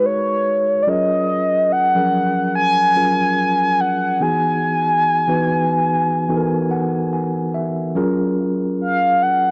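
A mellow, horn-like synth lead and a clean tine electric piano open this tender, dreamy R&B fragment together, moving at a relaxed 72 BPM with a swung sixteenth-note feel in F# major. The round, warbling lead carries the melody up front with a vintage sawtooth tone, filter sweep, soft attack and vibrato, colored by chorus and analog delay, while the electric piano, played through built-in speakers, accompanies it through G#m7, F#maj7 and Emaj7 chords. The piano adds a fill from 6.3 to 8.0 seconds before the harmony settles back on F#maj7, all captured in a dry, gritty hardware recording with little reverb.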